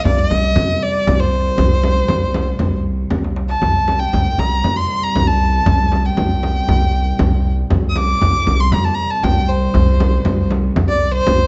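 Set in a moderate recital-hall reverb with a softened, rolled-off top, this stately excerpt from an Arabic maqam ensemble piece places a focused, close solo violin up front, singing the bowed melody with vibrato over an earthy, bright cello section that holds a low drone in the background. A woody, thumpy pizzicato upright bass anchors the bottom, while a crisp, deep metal-shell darbuka and a warm frame drum, both struck with hard hands, drive the straight four-beat pulse. A brief drum fill arrives from 3.1 to 3.6 seconds.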